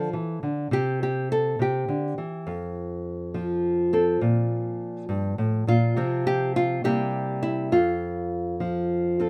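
The recording has light reverb, with the nylon-string guitar sounding small and sitting up front. This is a short excerpt of solo fingerstyle folk in F major, moving at 68 beats per minute in 6/8 with a straight feel. The mood is hopeful and peaceful throughout. The fingerpicked guitar carries everything by itself from 0.0 to 9.3 seconds, ranging from F2 up to A4 with a warm, acoustic tone. Its harmony opens on Dmadd9, passes through C, F and Bb5, then F5/C and C7, before the chords fall away at 7.7 seconds.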